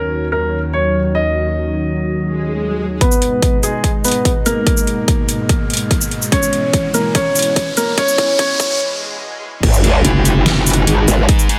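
Bathed in a moderate digital plate reverb, this aggressive, heavy half-time wobble dubstep excerpt opens with a dark, mellow baby grand piano melody over a lush, detuned unison pad that pumps with sidechain. At 3.0 seconds a punchy, overdriven electronic kick and a layered dubstep kit with a deep snare and metallic hats join as the piano is filtered through a build-up, with swells, a riser and a sub drop adding tension until the piano stops at 8.8 seconds. The drop lands at 9.6 seconds with a growling, formant-filtered bass up front, followed by double-tracked fuzz guitar stabs at 9.8 seconds and a metallic FM wobble bass, also up front, at 10.0 seconds.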